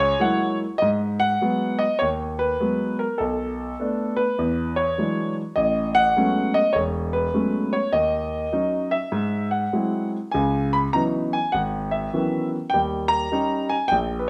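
Swung eighths at 101 BPM in 4/4 give this solo jazz excerpt a relaxed lilt, though the pulse bends freely in a rubato feel. A lone grand piano carries everything, its warm, present tone sitting up front with long sustain and ranging from deep E1 bass notes up to B5. The mood is cool and swinging, set in G# minor, with the harmony drifting from an opening F#9 through G#m7, Bm7 and E9 to a lush Amaj13. The progression then passes through D#m7, G#aug7 and C#m11 before resting on D#7 near 12.7 seconds. A moderate, large studio reverb with a 1.3-second tail adds spaciousness around the instrument. The passage runs 14.3 seconds and is cut from a longer piece.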